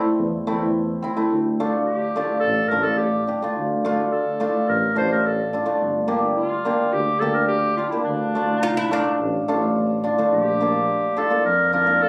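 A shimmering, hammered cimbalom opens this bittersweet, festive klezmer excerpt, joined at once by a breathy, mellow tuba with scooped notes and vibrato, before a clear, vintage clarinet takes the classical-style melody from 1.9 seconds, bathed in plate reverb, while a bright, woody oud with slapback echo adds a brief second line from 8.6 to 10.0 seconds, all captured with a phone's roomy club reverb and compression.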